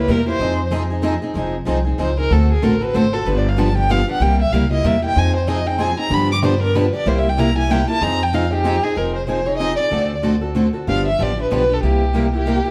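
A bowed violin leads this fiery, virtuosic slice of gypsy jazz, soloing from the start until 9.0 seconds with vibrato, portamento and a soft attack that give its expressive lines a smooth top, carried on a touch of tape echo. Beneath it, a bright picked steel-string acoustic guitar with fresh strings and a boxy parlour tone picks out the accompaniment up front, while a second plugged-in parlour guitar sits in the background, its warm picking marked by finger squeak. An upright bass with gut strings anchors the low end, plucked, woody and thumpy. The group drives along at 189 BPM in 3/4 with a swung eighth-note feel, cycling through minor and dominant changes such as Fm7, D7, G7 and C7, and moving into a new section at 9.0 seconds. A wet studio reverb places the players a little back in the room, and the piece is cut from a longer performance.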